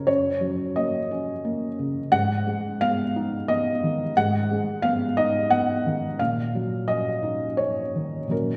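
A wet, lingering hall reverb surrounds a felt-muted upright piano that sits up front, its tone dark and mellow under thick felt. This short, hopeful and intimate fragment of neoclassical minimalist piano moves in a rubato three-beat feel, with the solo piano reaching from F#2 to F#5. It drifts through F#6, G#m7 at 2.1 seconds and F#6/A# at 6.2 seconds before the clip ends at 8.6 seconds.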